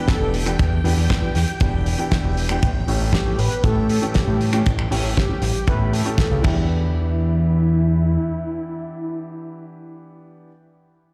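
A cosmic, groovy slice of nu-disco opens with a thick, detuned unison lead carrying the melody over a concert grand piano whose deep bass register and dub echo pump with the sidechain. A lush string machine ensemble hangs in the background with slow-attack chords, its vintage chorus shimmer also breathing to the pumping. The kick sits dry and up front with a tight, rolled-off top, while a damped 70s kit adds a fat snare, hi-hat, finger snaps and crash in a mid-forward, acoustic tone. Underneath, a fat analog bass with a sawtooth edge and a filter sweep holds the low end until 8.2 seconds, moving from Em7 to A7 and back. The drums and strings drop out around 6.5 seconds, leaving the lead, piano and bass in a large studio reverb as this cut from a longer piece closes.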